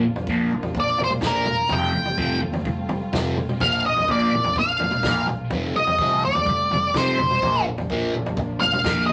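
A straight 4/4 pulse at 126 BPM drives this trippy, hypnotic psychedelic rock excerpt, where a punchy vintage drum kit of kick, snare and toms enters at 0.2 seconds under a double-tracked fuzz guitar riff with phaser, a round, very quiet fingered electric bass, and a dark bowed string section holding expressive sustained chords with vibrato and portamento in the background, while an up-front octave-fuzz lead guitar solo takes the melody from 0.8 seconds over chords alternating between Bb and Fadd9 in a moderate studio reverb.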